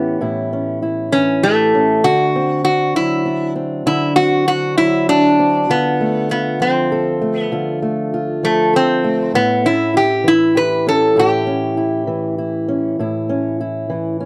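A metal-body resonator slide guitar carries the melody up front, its bright, metallic, nasal tone played with fingerpicks as the slide sings over this gritty, rollicking stretch of acoustic country blues. Beneath it, an old ladder-braced acoustic guitar is fingerpicked in accompaniment, its worn strings giving a dark, woody, boxy body that sits a little lower in the mix. Both guitars play throughout the 14.3-second excerpt, moving in a straight 12/8 lilt over a progression that shifts from A7 to D7, then to Dm7 at 5.7 seconds, and returns to A7 at 9.3 seconds. The sound is dry and close, in the manner of a 1970s studio session, with only light reverb around the duo.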